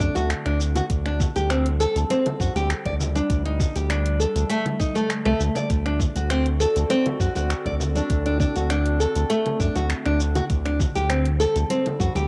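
A fingerpicked nylon-string guitar with fresh, bright strings plays arpeggios up front over a round, deep analog bass that pumps with sidechain, while a warbling, nostalgic tape-like pad holds dark, sustained chords in the background and a gritty, thumpy electronic kick anchors the beat, joined at 0.2 seconds by vintage, band-limited congas. This earthy, hypnotic organic downtempo piece moves at 100 BPM in a straight 4/4, with finger snaps, hi-hat and shaker from a layered deep house kit, as the harmony sways between D7 and a rootless Ebmaj7 over D. The guitar carries analog delay and cassette tape color, and the recording has a home-cassette character in a moderate spring reverb.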